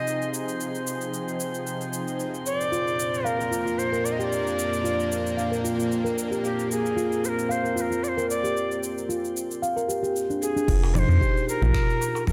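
An airy cedar flute with a crisp, chiffy attack carries the melody up front through an echoing delay in this earthy, mystical organic downtempo excerpt at 113 BPM, over a tense, nasal bowed-like drone, a glassy drifting texture in the background and overdriven afro-pop kit percussion of cabasa, congas, crash and finger snaps, all moving from Fm7 to a rootless Gm/F. A ringing steel tongue drum enters at 2.7 seconds with meditative arpeggios struck by firm rubber mallets. Around 10.7 seconds the drone and glass texture fall away as a round, dark analog bass with sidechain pumping and a deep overdriven electronic kick arrive on an F5 chord, joined a moment later by a soft-handed darbuka, all in a moderate concert hall reverb.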